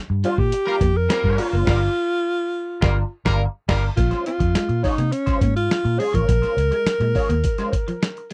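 A breathy, up-front alto saxophone with vibrato carries the melody over a sly funk groove, with a tight, clear horn section in octaves adding a second line from 0.7 to 3.8 s while the band hits accents. A dusty, gritty sampler-style drum kit with a thumpy kick and a dark, round, foam-muted fingered bass with tube saturation anchor the groove, as a clean picked electric guitar through wah plays the accompaniment and a hollow-body semi-hollow guitar with ensemble chorus plays the riff. The harmony moves from Gm7 to Bbm9 at 4.0 s, and the dry, close 1970s-style studio sound suits this short cut from a longer piece.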